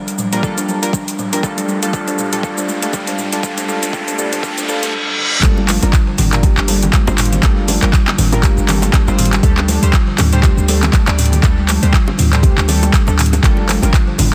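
A deep, up-front electronic kick drives this driving, warm afro house cut at 120 BPM in G minor, swung on the 16ths. It sits under an afro-pop kit of cabasa, handclaps, metallic hi-hats and toms, woody kalimba arpeggios and round, chorused analog key stabs, with tape echo and pumping on both. A filtered build-up with a drum fill, an electronic riser and a reverse cymbal climbs to the drop at 5.4 seconds, where a boomy 808-style bass and ringing high-tuned congas join, with tight, dry bongos following just after, over a Gm7 to Dsus4 progression in a dense, heavily limited master.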